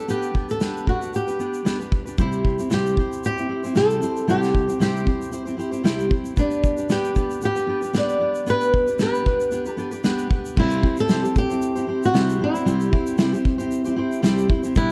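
Heartfelt and easy-going, this acoustic pop excerpt moves at 114 BPM in 4/4 with a light sixteenth-note swing, its chords shifting between G/B and C under light reverb and a dark production. A fingerpicked flamenco guitar carries the melody between D4 and D5, with fresh strings and audible finger squeak, while a fingerpicked steel-string dreadnought supplies a warm accompaniment ranging from B2 to C5. A loose indie drum kit enters at 0.1 seconds, up front in a small, pumping room, with a tight kick, medium-tuned snare, shaker and crash cymbal.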